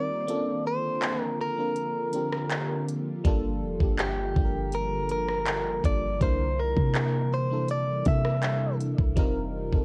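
A late-night, longing contemporary R&B piece opens with a bright, picked electric guitar melody carrying a warbly pitch drift up front over a lush, dreamy chorused FM electric piano and a dark, ethereal pad with its own reverb, all softened by a cassette-tape character, before a smooth drum kit with a knocking kick, handclaps, rim clicks and silky hi-hats enters at 0.3 s and a deep, boomy 808-style bass joins at 3.2 s as the harmony moves from Bbmaj7 through Gm7 and C13 to F9sus4.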